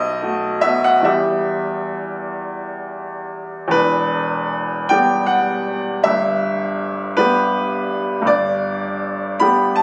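A bright, woody upright piano sits up front in this wistful, melancholic romantic nocturne in E minor, played solo with a rubato feel in 6/8 at 44-56 BPM (dotted quarters), spanning E1 to B5 and moving from B7 to Em and then to Em/G at 6.0 seconds, heard as a short cut from a longer piece that shifts into a new section at 3.7 seconds, captured on a phone in a recital hall with moderate reverb.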